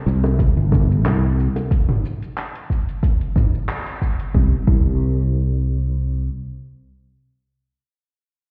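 A muffled, stone-walled ambience hangs over this short sunset chillout excerpt, as if the music is heard through a wall, with a blissful, relaxed mood at 91 BPM in 4/4 and a light swing on the sixteenths. Up front, a growly, direct fretless electric bass sustains low notes between G1 and C2, its tone colored by an analog chorus, and it carries on until 6.3 s. A layered deep house kit of handclaps, hi-hat, shaker and toms, re-recorded in a small room, opens the excerpt and plays until 4.3 s, soon joined by a deep, tape-warm electronic kick drum that sits forward in the mix. Tight, high-tuned bongos struck with hard hands add a brief acoustic flicker near the start. The full band hits an accent at 3.7 s, just before the second section begins, where the kick carries on briefly and the bass sustains to the end.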